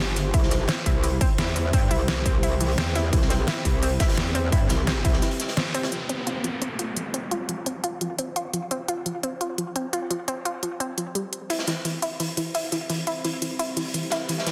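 Dark technical drum and bass at 172 BPM in a straight 4/4, tense and dark, heard as a cut from a longer piece. A deep, moody sawtooth pad with a sub octave sits in the background holding sustained chords through chorus and its own reverb, pumping against the sidechain. Over it a round, nasal analog pluck with a wave-folded edge spins bright arpeggios up front, smeared by tape echo. A metallic, distorted FM wobble bass and a punchy, tape-warm electronic kick drive the opening until a break at 5.2 seconds, with a band accent at 5.6. A crisp, deep-snared dubstep kit runs throughout, while a gritty, saturated garage kit in a bright stone room plays early and returns at 11.5 seconds. From 5.9 seconds a downlifter drops in, filter sweeps move across the pad and the arpeggio, and the whole sits in a lush hall reverb under a dense, heavily limited modern master.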